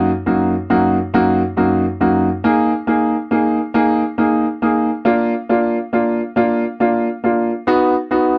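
A slow, swaying 6/8 pulse at 46 BPM carries this heartfelt pop excerpt, where a clear, open concert grand piano plays alone up front with deep bass from F#2 to G#4, moving through D#m/F#, G#sus2, A# and B over 8.4 seconds in a dry, close 1970s-style studio sound touched by light reverb.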